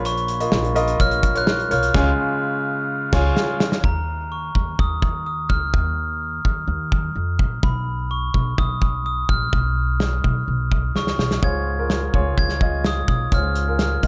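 Piano-driven pop at 126 BPM in a straight 4/4, dramatic and bittersweet, moving from Bb minor through Db, Ebsus2 and Bsus2 in a dark, dry production cut from a longer piece. A clear, polished baby grand with long sustain opens the accompaniment, drops out at 3.9 seconds and returns at 11.4, while a woody, thumpy pizzicato upright bass on gut strings holds the low end throughout and a glockenspiel struck with soft plastic mallets carries a bell-like, ringing melody up high. A loose indie drum kit with a punchy kick, medium-tuned snare, hi-hat and dark crash cymbals sits up front in a pumping studio room, marking a band accent from 1.9 seconds and adding fills leading into the second section and again just before the piano's return.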